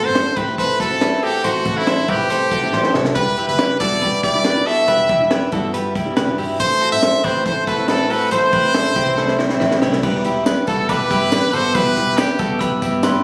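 A straight 4/4 pulse at 140 BPM drives this youthful, nostalgic jangly indie pop excerpt, where a brilliant, forceful trumpet with vibrato leads up front over a warmly fingerpicked steel-string acoustic guitar, bright, compressed arpeggios from a clean direct-recorded electric guitar, a round, foam-muted vintage electric bass and a dark, smooth compact cocktail kit with a high-tuned snare, punchy kick and two drum fills, before a bell-like glockenspiel enters in the background at 10.0 seconds with a jingly tambourine following at 10.3 seconds, the whole recorded on a phone in the room with light studio reverb.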